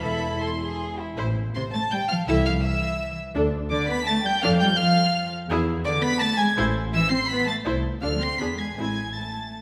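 Dramatic and stormy, this brief extract from a quick classical-period movement for string orchestra in A minor moves in a rubato 3/4 at roughly 151-171 BPM, with an up-front violin section singing the high melody over a second violin line, a vibrato-rich viola accompaniment, and a dark cello and double bass bass line, all bowed sul tasto with soft attacks for an intimate, close chamber sound in a moderate stage reverb, as the harmony drives through an E7 cadence back to A minor near 8.8 seconds.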